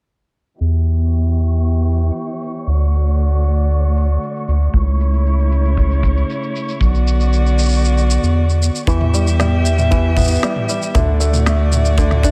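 An autumnal, wistful folktronica excerpt at 116 BPM in E dorian opens at 0.6 seconds with a dark, bowed string quartet holding sustained chords, its expressive vibrato and portamento softened by a low-pass filter, over a round, deep analog bass sitting up front and an organic electronic kit of shaker, woody snare and toms. A flickering, grainy texture drifts in at 1.5 seconds, mellow and in the background, bathed in its own reverb, while filter sweeps move across the bass and strings through the opening section as the chords pass from Em to D, A/C# and Bm. A tight, airy acoustic kick joins at 4.7 seconds and briefly drops out before the music turns back to Em at 8.9 seconds. There a fingerpicked open-back banjo arrives with twangy, plunky arpeggios, filtered and carried on tape echo, alongside a ringing, metallic vibraphone line with delay sitting in the background. The excerpt is set in a small room.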